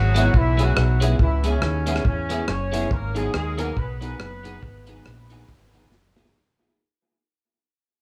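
A lightly reverberant, fading ska excerpt at 140 BPM with a swung, driving and mischievous feel moves from C#m7 to G#m7 as a distant, punchy horn section carries the melody in octaves through analog delay and plate reverb, a round, up-front fingered electric bass holds the low end, a twangy, scooped clean electric guitar with chorus accompanies, a worn, woody upright piano adds boxy stabs in the background, and a dry, deep reggae drum kit with tight kick and rim click plays a fill at 5.9 seconds.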